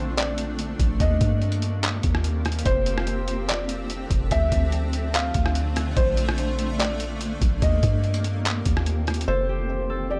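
A felt-muted upright piano with audible action noise carries the melody through a digital delay over a shimmering, detuned ambient pad with chorus and sidechain pumping and a deep, round 808-style bass, opening this floating, blissful stretch of half-time atmospheric cloud-rap, as a gritty, pitched-down trip hop sampler kit with a thumpy kick, handclaps, hi-hat and rim click enters at 0.2 seconds and stops at 9.3 seconds, when a bright, thumb-plucked concert harp begins delayed arpeggios.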